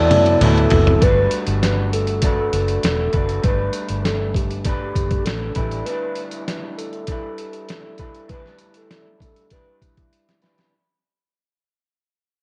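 Dreamy and nostalgic, this short bedroom-pop and indie-pop fragment is cut from a longer piece and moves in a straight 4/4 feel. A hollow, woody synth lead with a soft, clarinet-like tone carries the melody, colored by analog chorus, vibrato and a slapback echo. Beneath it, an electric guitar through a small old amp plays slightly broken-up, lo-fi accompaniment with subtle chorus and a warbly pitch drift. A dark, round, foam-muted fingered bass holds the low end until 5.8 s. A gritty sampler-style soul kit with a thumpy kick and fat snare sits up front, opening with a drum fill and closing with another at 10.1 s. The harmony moves from D69 to Gmaj9 and then A9sus4, while moderate spring reverb and the character of old cassette tape surround the music as it fades out from 1.0 s onward.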